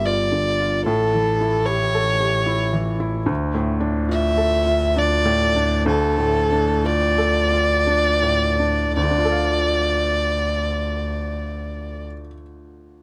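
This neoclassical piano and strings piece, taken from a longer work, moves in a rubato 3/4 at 54 to 75 BPM in D harmonic minor, with a longing, fragile mood over Gm7, A7 and Dm harmonies and a slowing from 2.1 to 9.0 seconds. A single violin, dark and woody, carries the bowed melody up front with vibrato and sul tasto tone. A felt-muted upright piano gives mellow, intimate accompaniment with audible action noise, and a bowed double bass adds a warm, floating low line with a soft attack until the piano sounds on alone briefly to 13.0 seconds, all captured with close, detailed microphones and little reverb.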